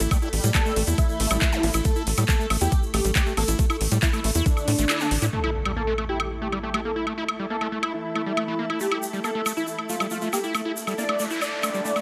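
Opening at full force, this alien, intense psychedelic trance excerpt at 138 BPM drops in with a knocking, overdriven kick, a garage kit of handclaps, metallic hi-hat and woodblock, a tight, punchy sequencer bass, a squelchy, screaming distorted acid riff, a swarming drone in the background, a faint wobbling formant-sweep bass, grainy distant egg shaker and a thick, detuned unison lead with phaser and 12-bit grit from 0.5 seconds, until the kick and bass fall away by 5.3 seconds for an electronic impact, after which an ethereal, airy pad rises behind the lead from 6.3 seconds and a noise sweep closes the cut.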